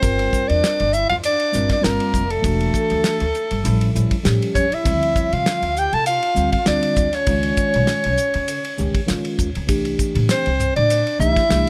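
A damped 70s drum kit with dark cymbals, a medium-tuned snare and a tight kick drives a funky, intense, lightly swung groove beneath woody pizzicato upright bass in this electric jazz fusion passage cut from a longer piece. Up front, a mellow soprano saxophone carries the melody with light vibrato and scooped notes, while a distant, roomy trombone with tape echo plays a second line and a clean tine electric piano with phaser supplies accompaniment through chords moving from Gm7 to Cadd9. Low-tuned congas with a thick-skinned tone enter in the background at 10.1 seconds, and the recording carries little reverb.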